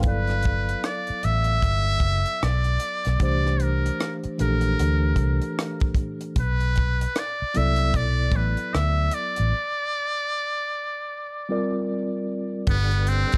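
A mellow, clean tine electric piano opens this sensual neo-soul R&B passage, cut from a longer piece, alongside a dark, round, foam-muted electric bass sitting up front and a tight, dry funk drum kit of hi-hat, kick and rim click, all in a swung 4/4 groove. A moment later, a trumpet with a metal mute carries the jazz-style solo melody up front, its tone brilliant yet thin and buzzy, breathy with a smooth top and touched by vibrato and plate reverb. The electric piano's accompaniment, heard through its built-in speakers with plate reverb, moves through Gmaj7, C9, Bm7 and Bbadd9 chords, and a break arrives at 9.5 seconds. At 12.7 seconds the piano stops as the harmony returns to Gmaj7, and a full tonewheel organ, first heard only briefly at the very start, comes back in the background with sustained chords, light overdrive, key click, chorus vibrato, a fast rotary speaker and plate reverb. 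The overall production is dark and warm, with light reverb.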